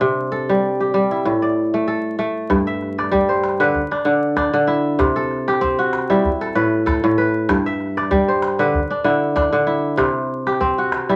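A ringing, fingerpicked kora opens this joyful West African fragment alone, its crisp, up-front arpeggios spanning a broad range over a swung four-beat feel. At 2.5 seconds a deep, acoustic calabash joins quietly beneath it as the harmony cycles through G, Dsus2 and C. A wet studio reverb and a vinyl crackle give the short passage a vintage, roomy glow.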